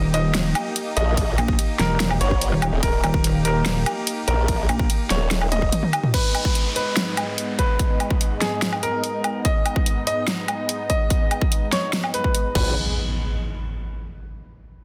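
A dense, heavily limited modern mix with light digital ambience frames this aggressive, heavy wobble dubstep excerpt, set in a half-time feel. It opens straight into a drop over D# harmony: a brilliant baby grand piano carries the melody through dub echo, while a lush, nasal sawtooth unison pad holds sustained chords with chorus and sidechain pumping. Two chorused, overdriven wobble basses sit up front. A saturated, pulsing sine pluck bass plays from the start, and a detuned, formant-swept pulse-wave bass joins at 1.0 seconds. A big-room dance kit with a huge snare, crash, hi-hat, ride, toms and woodblock comes in almost immediately, and a punchy electronic kick arrives just after the formant bass, all of it overdriven and bathed in studio reverb. A drum fill closes the drop, and at 6.1 seconds the harmony turns to G# minor as a downlifter enters, with both basses already gone, leaving piano, pad and drums to carry the second half. 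A final electronic impact lands as the music moves into a brief chordless close.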